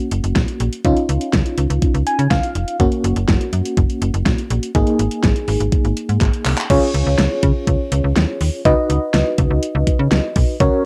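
A tremolo-laden FM electric piano opens this wistful, nostalgic synth-pop excerpt, its dark, decaying chords carrying a faint noise layer and a short fill at 1.8 seconds, while a snappy slap-like FM bass with a metallic attack joins up front. An overdriven pop drum kit with a knocking kick, fat snare, warm hats, handclaps and crash cymbal drives the straight 4/4 groove, its tape-worn character suggesting a re-recording in a small room. After a drum fill at 6.2 seconds the music moves into a new section over light digital reverb and a cassette-home-recording haze, the fragment cutting off as part of a longer piece.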